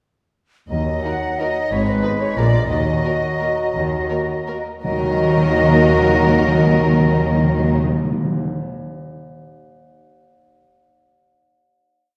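A rubato 3/4 waltz pulse between 158 and 197 BPM carries this dark, sweeping orchestral ballroom piece in Eb minor, where a con sordino violin section sings the lush melody from 1.1 s over after-beat chords from a second muted violin section and very quiet violas. Veiled cellos and distant double basses hold the bass while a hollow flute doubles the tune, and oboe, clarinet and roomy bassoon sustain chords beside mellow French horns adding faint after-beat harmony. Round, up-front timpani strike single bass notes and return at 4.8 s for the final chord after the tempo eases from 2.2 s, the orchestra set in a reverberant scoring-stage space heard from further back.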